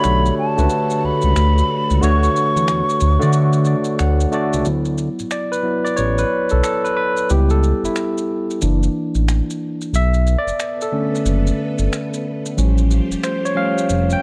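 A swung 16th-note groove at 91 BPM in 4/4 sets up this soulful, sensual neo-soul R&B excerpt in D major, where finger snaps and maracas sit close over a smooth, up-front synth bass, a hollow, close-miked concert flute with slapback echo sings the opening melody until 4.0 seconds, a barky, lightly overdriven tine electric piano comps throughout and takes a solo from 4.7 seconds, and a swirling, phased string machine holds sustained chords in the background, dropping out at 4.6 seconds and returning at 9.9 seconds, all within a dark studio reverb over extended chords such as Dmaj7, F#7alt and Bm9.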